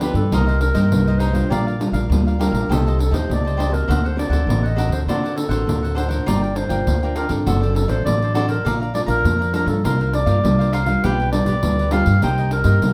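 A moderate studio reverb lends space to this fragment of a yearning, bittersweet samba and choro piece in G minor, moving at 101 BPM in a straight 4/4. A mellow, classical-style clarinet carries the solo melody from a distance, touched by slapback echo. It plays over a warm, fingerpicked nylon-string guitar, a crisp picked cavaquinho set lower in the mix, and a jingly pandeiro struck with hard hands in a large room, while an up-front, woody, thumpy pizzicato upright bass on gut strings anchors harmony that moves from Cm7 through D7b13, Bbmaj7 and C9sus4 before arriving back on Cm7 at 12.2 seconds.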